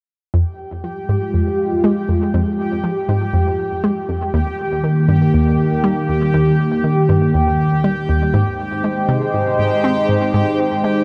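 Expansive and hypnotic, this short cut from a longer piece of ambient, sequencer-driven space music moves at 120 BPM in F minor, where a bright, full-bodied sweeping resonant pad holds sustained chords through Fmadd9, Eb and Ab under a filter sweep. A round, detuned analog pluck with tape echo repeats its riff up front, and a bubbling stepped-filter texture adds random resonant flickers, all three bathed in a huge reverb with a 7.7-second tail.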